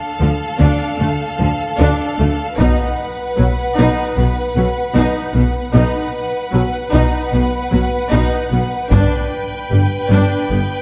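Set in a dark, warm production with a moderate concert-hall reverb, this brief cinematic fragment of an epic orchestral film score sounds cut from a longer piece and moves at a steady 76 BPM in a straight 4/4. The mood is epic and relentless, building throughout as the harmony moves from D minor to B at 2.6 seconds and on to G at 8.9 seconds. Two bowed violin sections carry the top: the melody sits high, with a clear, intense and somewhat distant vibrato sound, while a second line below it is smooth and even. A rich viola section fills the middle with lush, vibrato-laden accompaniment that has a smooth top, and underneath, a focused cello section and a deep, rich double bass section anchor the bass. A taiko ensemble, struck with hard sticks in a live room, punches in twice, first at 2.6 seconds and again near the close, adding weight to the gathering momentum.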